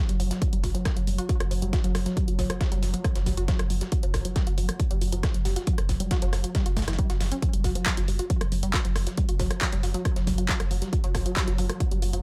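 Driving peak-time techno at 137 BPM in 4/4, relentless and hypnotic, built on a heavy, up-front electronic kick, a punchy tape-warm analog drum machine with handclaps, hi-hat and rim click, a gritty, compressed sampler-style kit of overdriven hi-hat and snare set low in the mix, a round sine sub bass holding F#1 with overdrive and sidechain pumping, a tight detuned sawtooth riff with filter pluck, chorus, overdrive and delay ranging from E3 to F#4, and a moody, warbling vintage pad droning on F#3 in the background, all in a dry room in this 12.2-second cut from a longer piece.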